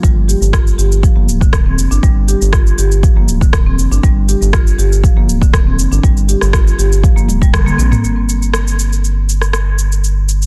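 A straight 4/4 afro house groove with an earthy, spiritual mood puts a deep, tape-warm electronic kick up front beneath an electronic afro-pop kit of cabasa, rim click, toms and a soft-clipped snare, while a round, dark analog bass pumps to the sidechain under woody rosewood marimba arpeggios with digital delay over a Gm7 chord, until a drum fill and band accent see the kick drop out at 7.6 seconds and the marimba at 8.0, leaving bass and kit to carry this dry, densely limited cut from a longer piece to 10.5 seconds.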